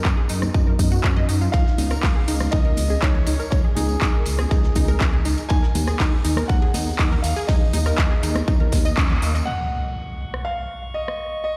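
Expansive and driving, this progressive house excerpt moves at 121 BPM in a straight 4/4 in Eb minor, cut from a longer piece. A punchy, up-front electronic kick anchors a layered big-room dance kit with metallic hats, handclaps, rim clicks and crash, its snare, hats and cymbals low-pass filtered and the hats and cymbals pumping with the sidechain, while a dark, detuned saw bass rumbles and beats beneath, also pumping. A lush unison pluck arpeggio with delay and sidechain pumping runs alongside bright congas and a jingly, close tambourine. From 1.5 seconds a background soul kit with dark cymbals and a medium-tuned snare joins, and a concert grand piano carries the melody with a deep, open tone and delay, over chords moving from Dbadd9 to Ebsus4. After a band accent at 9.0 seconds, an electronic impact hits at 9.5 seconds as a filter sweep runs over the drums, and a calm, glassy texture with drifting overtones, chorus and its own reverb holds a high Db6 to the close, all set in a large studio reverb.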